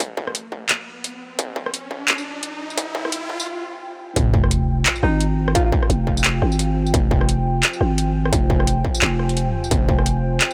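A growling, buzzy 808-style bass enters at the drop at 4.2 seconds, sitting up front beneath a distorted, tape-warm electronic kick and a layered drum and bass kit of handclaps, metallic hi-hats, rim clicks and tambourine in this dark, cinematic half-time drum and bass excerpt at 173 BPM in F minor, swung on the sixteenths. A riser and sub drop carry the build-up into the drop, while a deep, warbling, vintage ambient pad holds sustained chords with chorus, built-in reverb and sidechain pumping. A breathy, whispered alto saxophone with vibrato and delay slips in briefly at 5.0 seconds, close-miked and intimate, all within a light digital ambience.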